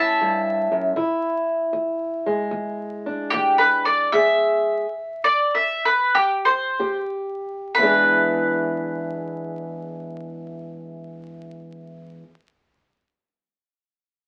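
A picked mandolin with woody double strings carries a swaggering, gritty melody over a dark, boxy fingerpicked old ladder-braced acoustic guitar in this 4/4 acoustic country blues excerpt in E mixolydian, swung at 59-79 BPM and slowing down from 1.0 to 7.8 seconds, moving through A7, E7, E and Fsus2 before a second section begins at 7.8 seconds, all heard through wet studio ambience and the crackle of a very old 78 rpm record.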